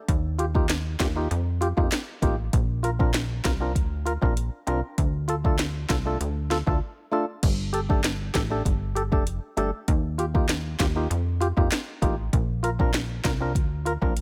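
Dancehall with a hypnotic, sultry mood, built on an electronic afro-pop drum kit with a deep kick, sharp snare, metallic hats and handclaps, a punchy, funky plucky analog bass, and a hollow, dark percussive organ stab treated with chorus and sidechain pumping, all up front in a dry mix across two matching passages split by a brief break at 6.8 seconds.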